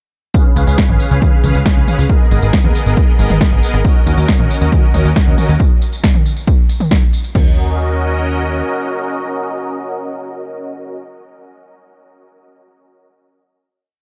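Euphoric and bittersweet, this short uplifting trance piece in Eb minor runs at 137 BPM in a straight 4/4, opening directly into a drop where a punchy, up-front electronic kick drives four-on-the-floor beneath a layered, overdriven dance kit of crisp hats, snare backbeat, tambourine, toms and crash. A detuned, plucky analog bass gallops in sixteenths from 0.6 s, while an evolving supersaw pad sustains chords from Db7 through Abmadd9 to Ebm7, both parts carrying sidechain pumping. The drums stop at 7.4 s and the bass at 8.6 s, leaving the pad to hold a final Ebm7 chord in a dark, dry production.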